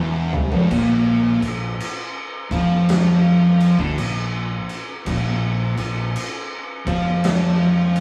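This heavy, hypnotic stoner and doom metal excerpt opens on a pair of thick fuzz guitars and a fingered electric bass, all entering together at 0.0 seconds. An oversized, low-tuned acoustic drum kit joins at 0.3 seconds, finishing a fill that lands on a Bb5 chord at 0.7 seconds. The tempo is a slow 55 BPM in 4/4, with a swung eighth-note feel that gives the riff a lumbering sway. One distorted guitar sits up front while its twin lies very quiet beneath, both dark and picked. The overdriven bass adds a bright, growly low end, and the drums bring a fat snare, punchy kick and dark cymbals within a gritty, saturated kit sound. Light reverb and a small-room ambience give the impression of a band playing live together in one room.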